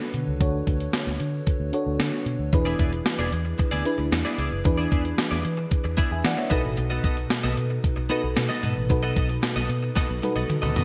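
Romantic and glossy, this short excerpt from a longer 1980s-style pop piece moves at 113 BPM in a straight 4/4, centred on E mixolydian. An FM electric piano layered with a soft pad opens at 0.0 seconds, its lush, dreamy tone treated with chorus and tremolo and sitting up front, while a dark, round, foam-muted fingered electric bass anchors the low end. A gated digital drum machine drives the groove with a thumpy kick, hi-hat, toms and a snare soaked in gated reverb, carrying a tape-tinged, small-room character that keeps it forward in the mix. At 2.5 seconds a bright, twangy twelve-string electric guitar enters with a clean, picked riff, dressed in lush chorus and delay. The harmony shifts from Dmaj7 to E7 and then B7 at 6.5 seconds, and a drum fill from 10.0 seconds closes the passage. A moderate plate reverb and digital ambience give the whole production its polished, shimmering period sheen.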